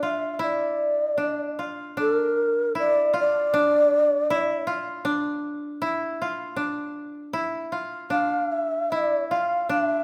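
A mellow, breathy end-blown bamboo shakuhachi sits up front in a moderate recital-hall reverb, carrying the melody over a dry, woody koto played with fingerpicks as the second line. This still, meditative piece of Japanese chamber music moves freely in rubato around 78 BPM in 2/4, in D hirajoshi, and is cut from a longer performance. The shakuhachi, with vibrato, tongued chiff and rolled-off highs, falls silent at 4.6 seconds and returns at 8.1 seconds, while the koto plays throughout the 10 seconds.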